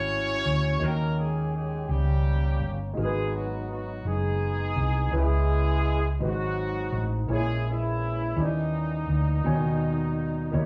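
A slow 6/8 lilt at 56 dotted-quarter beats per minute carries this fervent, soulful gospel fragment in G# minor, where a punchy, tight horn section sings the melody with vibrato and octave doubling over natural, short-sustained baby grand piano chords and a dark, round hollow-body electric bass sitting up front, all blended by a live-room feel and wet studio reverb as the harmony moves through rich seventh chords toward a D#7b9 and a closing G#m/D#.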